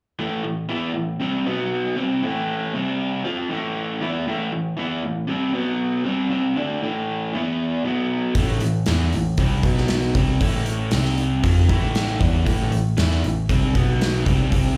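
A dark, compressed, overdriven electric guitar opens this gritty, swaggering classic rock piece in A minor at 117 BPM, playing its slapback-echoed riff alone over Am, B5 and C5 chords until a gated 80s drum kit, with its punchy kick and medium-tuned snare ringing in a bright stone room, arrives at 8.3 seconds and a round, hollow-body picked bass follows at 8.4 seconds, all heard as a live gig through the venue's PA with club reverb before the piece is cut off at 14.8 seconds.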